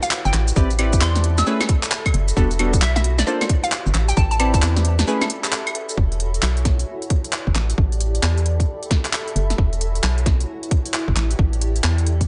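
A swung, skipping two-step beat of tight electronic kick, cracking snare, crisp hats, handclaps, claves and shaker drives this bouncy, late-night UK garage excerpt, where a dark, percussive organ-like FM bass with tube saturation sits up front. Meanwhile, a hollow, detuned square-wave pluck and soft, deep chord stabs, both carrying chorus and dub echo, play over jazzy minor-eleventh chords; the pluck drops out at about 4.6 seconds and the stabs at about 5.2 seconds. That leaves drums and bass to carry the suspended chords from 6.0 seconds in a dry, dark-edged mix.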